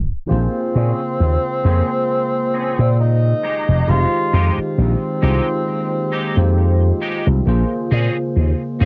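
Hazy and nostalgic, this short vaporwave excerpt drifts along at 67 BPM in 4/4 with a light sixteenth-note swing, moving from Bbm9 to Fm9 and back to Bbm9. It opens on a tape stop while a bell-like tine electric piano, dressed in analog chorus and delay, and a dark, warbling tape-like pad with chorus and reverb settle in beneath. Up front, a growly, punchy slap bass runs through an envelope filter and tube saturation, anchoring the low end. A mellow tenor saxophone carries the melody with vibrato and a distant, roomy quality, its line coloured by cassette tape and tape echo before it falls silent at 7.0 seconds. A clean, picked electric guitar riff enters at 0.7 seconds, passing through chorus, delay and a low-pass filter that sweeps across its part. The whole sounds like a home cassette recording in a small booth, its highs dulled above 7.5 kHz.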